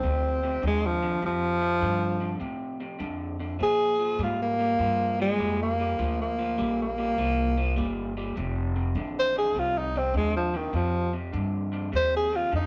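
A rough rehearsal-room recording with tube saturation and a moderate stone-room reverb frames this rollicking, swaggering electric blues shuffle at 101 BPM, cut from a longer piece, where a breathy, mellow tenor saxophone solos up front with scooped notes and light vibrato over a slightly broken-up, lo-fi riff from a picked electric guitar through a small old amp and a woody, thumpy pizzicato upright bass on gut strings, all moving from F13 to Bb13 at 3.6 seconds and back to F13 at 8.4 seconds.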